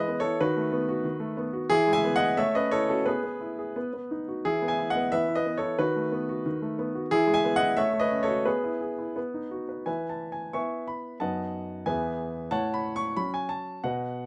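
Close, detailed microphones and a light reverb give this recording an intimate, polished sound, with the grand piano sitting up front and present. It is a classical-period sonatina in 2/4, played solo with a gentle rubato that suits its elegant, playful mood. The warm piano covers a range from E2 to C#6, and the harmony circles through clear, graceful chords such as B7/D#, A, F#m/A and E/B. The opening section runs until 9.9 seconds, when a second section begins and carries the music to 14.3 seconds. The passage is cut from a longer piece.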